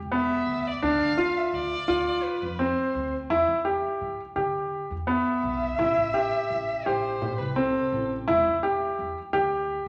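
A wet recital hall reverb, with a decay of about 1.7 seconds, surrounds this restless, urgent piece of contemporary chamber music, cut from a longer work and set in 7/8 at 170 BPM counted in eighths, with a straight feel in E Phrygian and tuning at A4 = 444 Hz. Up front, a clear, intimate baby grand piano plays arpeggios in its middle register from start to finish, its action noise audible beneath the notes. A single dark violin carries the melody with bowed vibrato, expressive portamento and an up-front presence, falling silent at 8.1 seconds. Below, a pizzicato upright bass on gut strings gives a woody, thumpy low line from the opening through 9.8 seconds. A small, bright frame drum played with soft hands joins in the background from 5.8 to 7.8 seconds, while the harmony moves through Dm7, Em7 and Am7 before returning to Em7.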